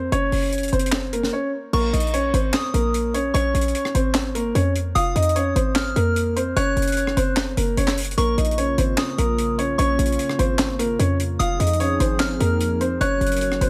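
Trap hip hop at 149 BPM in a half-time feel and Bb minor, hard-hitting and eerie, this short cut opens on a dark, mellow grand piano melody with tape echo and a low-pass filter over a punchy, sine-based 808-style bass and a tight, small-room funk kit with a high-tuned snare, handclaps, hi-hat, rim clicks and crash, before a soft FM synth bell with chorus, phaser and tape echo enters at 1.7 seconds after a brief break, and a deep, moody, detuned analog pad with ring modulation settles into the background from 8.2 seconds, all set in a lightly reverberant space.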